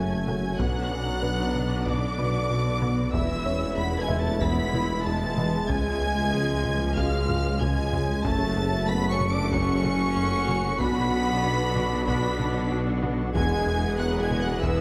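A dark, woody violin section carries the high melody over a smoother second violin line, lush violas, distant French horn chords and a swarming, warbling drone in this tense, futuristic hybrid orchestral-electronic film cue at 94 BPM in F# minor, while a rubbery square-wave bass riff bounces over a low end of mellow tuba, deep sine sub bass, very quiet studio cellos and double basses, a barely audible electronic impact opens it, a felt-muted upright piano and a soft, round synth pluck add faint texture and arpeggios, and compressed, saturated taiko drums enter just after the start and play a fill from 7.3 to 8.2 seconds, all set in a moderate scoring-stage reverb.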